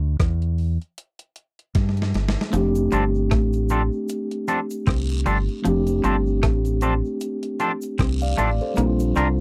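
Lovers rock reggae at 77 BPM in F major, sweet and romantic with a swung 16th feel, opens on a round, punchy dub bass and a gated 80s drum machine with a thumpy kick and gated-reverb snare. After a drum fill, the mellow tine electric piano, a twangy guitar riff, and echoed cabasa and guiro join at 2.5 seconds, followed by bright picked guitar stabs at 2.9 seconds, over F6 and Bb6 chords in a dry, close 1970s-style studio sound.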